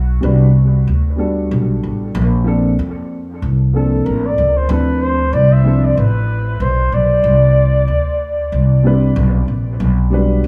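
Soaked in dub echo and studio reverb over a light small-room ambience, this short hip hop excerpt has a relaxed, smooth mood at 94 BPM in 4/4, with a gentle 16th-note swing in G major. An up-front pizzicato upright bass on steel strings opens at 0.0 seconds, its woody, growly tone anchoring the low end. A dark, boxy upright piano, mellow and slightly detuned, comps chords through dub echo, moving from Gmaj7/B through Bbmaj9, Dm9 and Cmaj7sus2 before returning to Gmaj7/B. At 3.7 seconds a breathy flugelhorn takes a jazz-style solo with a soft attack, vibrato and scooped notes, its roomy, echoed voice floating above the keys until 8.8 seconds. Bass and piano then carry the groove to the end of the cut.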